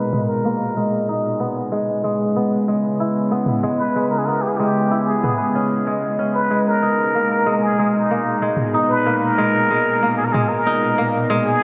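Organic downtempo in G# minor at 94 BPM with a swung 16th-note feel, this mystical, meditative excerpt sets a raspy, growling plunger-muted trumpet melody with scooped notes and wah-wah inflections over ringing, fingerpicked kora arpeggios under a filter sweep, a tense, string-like drone holding sustained chords from G#madd9 to C#m7 and back, and layered electronic toms entering at 0.1 s and stopping at 10.5 s, all bathed in a lush hall reverb with a big arena sound.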